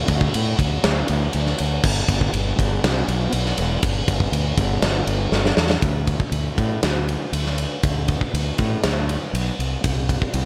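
A growly, fuzz-driven fingered electric bass with punchy overdrive sits up front beside a big, roomy acoustic rock kit of tight kick, medium-tuned snare, crash and ride, powering this anthemic hard rock excerpt at 120 BPM in a straight 4/4 under light reverb, with a drum fill at 5.3 seconds leading into a new section at 5.8 seconds.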